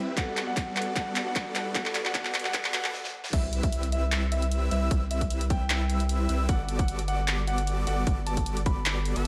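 A hard-clipped, overdriven electronic kick drives this lush, emotional future bass cut at 152 BPM in a half-time feel, joined by a big-room dance kit with a huge snare, handclaps, hi-hat and crash, while a warm grand piano melody and bright, detuned supersaw chords pump under sidechain through a build-up with filter sweeps, a barely audible riser and a soft, round pluck that drops out at 2.9 s. After a short stop, the drop lands at 3.3 s with a faint impact, a deep, saturated sub bass and an airy, dreamy lead playing arpeggios in the background, over chords moving from Gmaj9 to Cmaj7 and back. The mix sits in light reverb and digital ambience, with dub echo trailing the piano, pluck and lead.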